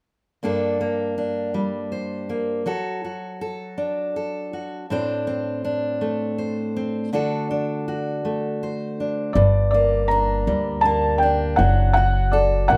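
Acoustic folk in a slow 6/8 at 54 BPM in G harmonic minor, this wistful, reflective excerpt opens with a full-bodied, fingerpicked dreadnought guitar carrying the chords from 0.4 seconds. At 9.3 seconds a soft, felt-muted upright piano enters up front with an intimate, mellow melody bathed in plate reverb, joined at 9.4 seconds by a woody, thumpy pizzicato upright bass. The rough home-demo mix sits in a moderate studio room, keeping the small-band sound close and unpolished.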